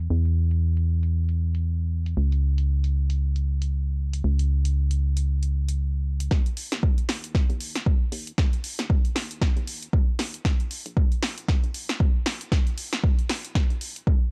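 A swung 16th-note groove at 116 BPM in 4/4 drives this hypnotic deep house passage, opening with a filter sweep over a punchy, tape-softened analog drum machine playing hi-hat and snare, and a hollow, organ-like FM bass that is dark, percussive and tube-saturated, pumping against the beat in the low register. At 6.3 s an overdriven, layered electronic kick drum lands up front as a drum fill and build-up run through to the end. The dry, gritty hardware sound has a cassette-tape haze and little reverb, giving the cut a close, intimate feel.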